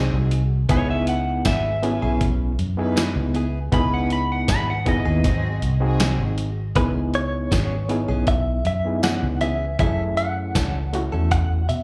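Soulful and mournful, this straight-eighth soul blues moves at 79 BPM in 4/4 in C# minor, heard as a short cut from a longer live club performance with light reverb through the venue's PA. A dusty, sampler-style drum kit sits up front with a thumpy kick, medium-tuned snare, hi-hat and tambourine, joined by a round, foam-muted fingered bass that is dark and punchy. An overdriven reed electric piano with tremolo and slapback echo carries the accompaniment through a combo amp, while a clean, direct-recorded guitar adds compressed stabs and a studio string section holds bowed, gut-toned chords with light vibrato in the background until 6.3 seconds. Over the opening, an electric slide guitar, dark and slightly broken-up, takes a solo from 0.7 seconds, moving over G#7 and C#m7. At 6.8 seconds a bright, clean picked guitar with tremolo and slapback echo takes the melody in the background as the chords shift from C#m7 to F#m7.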